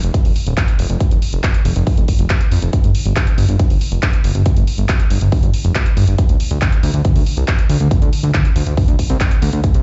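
A fat, sawtooth bass and an electronic dance kit of handclaps and hi-hats open this driving, soaring uplifting trance excerpt, cut from a longer piece in a straight 4/4 metre. A punchy, layered kick joins at 0.1 s and sits up front alongside the bass, giving the groove its weight. The bass is thick and detuned, with a fast-attack filter pluck that sustains and evolves. Sidechain pumping breathes through both the bass and the hats, while the claps and hats sit lower and more polished beneath them. The whole passage sounds as if played over a big sound system in a bare room, bathed in large studio reverb, with the top end rolled off above 7.8 kHz.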